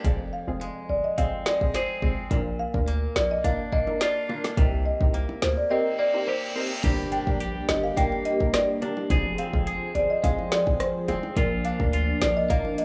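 A woody, dark marimba played with medium mallets carries the melody through tape echo, entering at 0.3 seconds over a tough, sultry dancehall groove at 106 BPM in a straight 4/4. Beneath it, an up-front electronic afro-pop kit with a deep kick, woody snare, metallic hats, rim clicks and crashes drives the beat, while a heavy, punchy 808-style bass with a noise layer hits hard and decays. A twangy, clean electric guitar picks bright arpeggios bathed in spring reverb, and a nasal, detuned chord stab with chorus adds plucky accompaniment over a progression moving from Fm through Bb, Cm7 and Gm. Low-tuned, close and dry bongos slip in very quietly at 2.3 seconds, and an electronic reverse cymbal rises into an impact at 6.8 seconds, where a mellow, detuned analog pad with chorus, phaser and sidechain pumping joins with sustained chords. This cut from a longer piece has the light digital reverb and small-room feel of a rough home demo mix.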